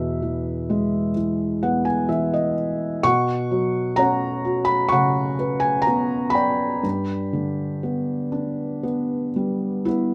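Wistful and reflective, this short classical fragment for solo piano, cut from a longer piece, unfolds in a lyrical, rubato 4/4. The only instrument is a felt-muted upright piano, tuned slightly low at A4 = 438 Hz, spanning E2 to C#6 across the full 10.1 seconds. Its tone is soft, mellow and dark, with an intimate, vintage character and audible action noise that places the listener close to the hammers. A brief fill between 1.1 and 3.0 seconds ornaments the opening E harmony before it moves to Bsus2 and then settles on G at 6.8 seconds. Close, detailed microphones and light reverb keep the smooth piano up front in a quiet, personal space.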